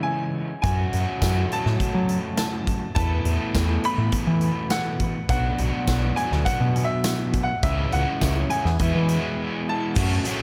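A growling, overdriven picked bass sits up front in this cool, restless indie rock excerpt, under two overdriven electric guitar riffs, one carrying harmonic tremolo and the other a lush chorus in the background, while a brilliant, woody upright piano melody with analog delay rides high, a big rock drum kit with punchy kick and bright cymbals drives the echo-heavy small room from 0.6 seconds, a brief break falls at 9.4 seconds, and a grainy tube shaker appears only at 10.0 seconds.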